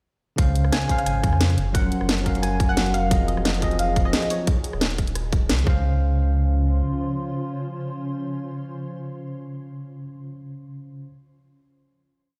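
Heard through a big sound system in a bare room with large studio reverb, this brief, lush and uplifting liquid drum and bass piece pairs a bell-like tine electric piano with tape echo, holding spread chords with syncopated pushes, and a shimmering, ethereal pad with chorus and sidechain pumping from 1.5 s, while a deep, round sub bass with tube saturation plays long gliding notes under a tight, tape-warm two-step kick and a garage kit of rim clicks, hi-hats and a cracking snare rolling through the drop, a soft pluck with lush chorus and delay wanders through a free melody, and the electric piano rings on past the final hit at 5.8 s.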